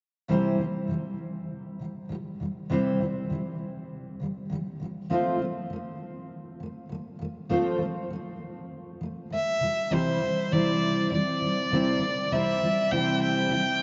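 Drenched in cathedral-sized reverb with a dulled top end, this dreamy pop excerpt moves at 100 BPM in C major with a light sixteenth-note swing, sunny and heartfelt in mood. A full-bodied, double-tracked jumbo steel-string acoustic guitar is fingerpicked up front from 0.3 seconds, moving from C to F and back to C. At 9.3 seconds a single bowed violin enters with a smooth, rich vibrato tone and a touch of delay, carrying the melody above the guitar.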